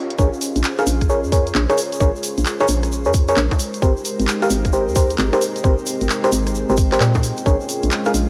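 A swung two-step UK garage groove at 132 BPM drives this moody, soulful excerpt in Bb dorian, built on a tight, up-front electronic kick and a layered garage kit of bongos, handclaps, hi-hat and rim click, with a grainy tube shaker sitting close. A punchy, hollow FM bass bounces beneath glassy, bell-like FM electric piano stabs that warble through chorus and tape echo, while an airy, breathy pad holds sustained chords and a deep, dark ambient pad with its own reverb adds a sustained texture, both pumping against the sidechain. The harmony moves from Bbm7 to Abmaj9 at 3.6 seconds and back at 7.2 seconds, and cassette tape colours the keys, pads and drums with a home-recorded haze under light digital ambience.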